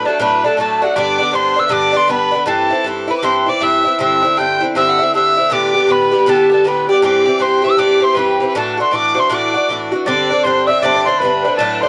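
Swung eighths at a brisk 158 BPM in 4/4 drive this bright, lively Celtic folk passage, cut from a longer piece, with an up-front, metallic Irish bouzouki giving picked accompaniment on its doubled strings beneath a pure, chiffy wooden whistle that carries the melody with vibrato, a crisp attack and a distant, unsteady quality. A clear, focused fiddle, played by a single player, bows a second line throughout, and at 10.1 seconds a ringing, fingerpicked concert harp adds another second line touched with tape echo. The sound is that of a home cassette recording made in a wet booth.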